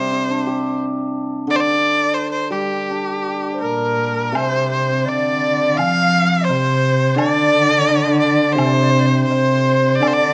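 Graceful and tender, this Chinese traditional chamber passage at 85 BPM in a free, rubato 2/4 opens with a clear, focused erhu melody full of vibrato and portamento over a shimmering, ringing hammered dulcimer, joined around 3.5 seconds by an airy large dizi with a buzzing membrane and a dark, woody cello on second lines, while a woodblock sits in the background from 4.4 seconds, heard through close, detailed microphones in a moderate recital hall reverb.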